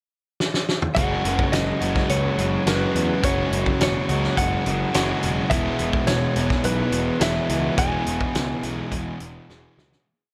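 Shoegaze and dream pop rock with a dreamy, hazy mood, this short piece opens with a fill from a loose indie drum kit at 0.4 seconds; its fat snare and punchy kick sit up front with a gritty, rolled-off tone. From 1 second, a crunchy overdriven guitar soaked in reverse reverb rings out chords, while a dark, thick fuzz guitar with subtle chorus rings in the background. Above them, a clean, compressed electric guitar plays short call-phrase motifs through tape echo, a fuzzed bass drives eighth notes, and a very quiet, lush string machine pad sustains chords, all within a small room ambience until the piece fades out from 7.8 seconds as the drums close with another fill.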